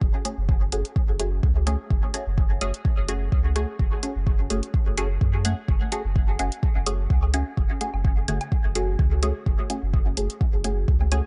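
Cavernous and nocturnal, this dub techno piece rides a lightly swung groove built on an overdriven, up-front kick and a smooth, clean sine sub bass that pumps against it, with an overdriven hi-hat joining at 0.3 seconds. A muted, detuned sawtooth chord stab sits low in the mix, coloured by phaser, 12-bit sampler grit, sidechain pumping and dub echo. From 7.2 seconds, tape-warm electronic woodblock and toms appear in the background with their own echo and pumping, and the track sits in a dark digital ambience.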